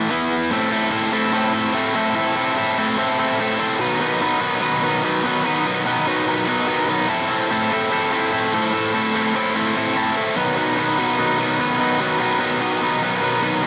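A double-tracked, overdriven electric guitar opens alone on an E5 power chord at 0.1 seconds, then settles into a brooding rock figure that moves between A minor and B in a straight, steady 4/4. Picked and bright with a gritty bite, the guitar sits up front across its low-to-mid range, wrapped in a light digital ambience. This cut from a longer piece runs to 13.7 seconds.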